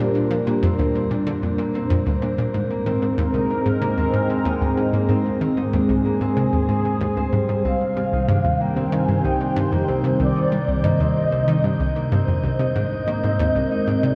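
An evolving, resonant pad of detuned sawtooth and sine tones sits up front in this expansive, hypnotic piece of ambient, sequencer-driven space music, holding sustained chords through a slow filter swell with chorus and shimmer reverb. Beneath it, an analog pluck riff with a round, bright attack and short decay repeats in the low register, its chorus and delay giving the sequenced motion a hypnotic pull. A thumb-plucked concert harp plays ringing arpeggios trailed by delay and shimmer, while an airy, breathy, wind-like noise texture hovers dark and distant high above. At 7.6 seconds a mellow, horn-like synth lead enters with a soft attack, its vintage, warbling tone colored by vibrato, cassette tape and ensemble chorus as it carries the melody. Steeped in a cathedral-like reverb, the dreamy mix feels vast and suspended, cut from a longer piece.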